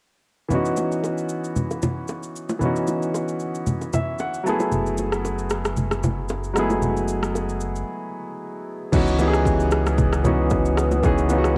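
A polished grand piano sits up front from the start, playing accompaniment chords with a cassette-tape sheen, joined at once by a punchy, overdriven electronic deep house kit of kick, rim click, shaker and crash, and by close, acoustic congas and bongos. This late-night, hypnotic amapiano fragment, cut from a longer piece, moves with a light swing, and the piano adds a fill just before a deep, full sub bass with an octave layer enters at 4.7 seconds. A break arrives at 7.9 seconds before the groove resumes in a new section. At 9.8 seconds a moody, detuned sawtooth pad with ring modulation and wave-folding slowly fades in far behind the mix, treated with chorus, reverb and sidechain pumping. The whole recording has a homemade cassette character with light digital ambience.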